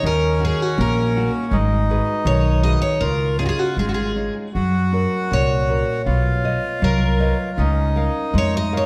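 Tender and nostalgic, this excerpt of a fado-style ballad in 2/4 moves with a rubato feel, led by an up-front twelve-string guitar whose shimmering, octave-doubled picked melody carries a touch of tape echo and the occasional finger squeak. A reedy, close-miked accordion holds a dry second line beneath it, while a full-bodied nylon-string guitar supplies a deep, classical fingerpicked accompaniment. A woody, thumpy upright bass on gut strings, played pizzicato and sitting up front, anchors the low end, and the ensemble sits in a moderate recital hall reverb.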